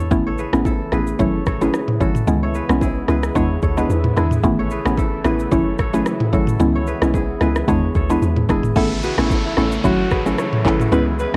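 Afrobeats at 111 BPM in F# minor, smooth and mellow, with a light 16th-note swing and a dry, cassette-tinged home-recorded sound. A woody, up-front synth pluck carries the accompaniment through chorus and phaser alongside a crisp, ringing fingerpicked kora riff, a deep, round log drum bass and an electronic afro-pop kit with deep kick, handclaps, rim click, shaker, toms and crash, while very quiet congas and bongos and a detuned sawtooth pad with sidechain pumping sit in the background over a cycle of Aadd9, F#m7, C#m7 and E7. At 8.8 seconds a breathy, raspy alto saxophone with vibrato takes up the melody as an electronic downlifter enters.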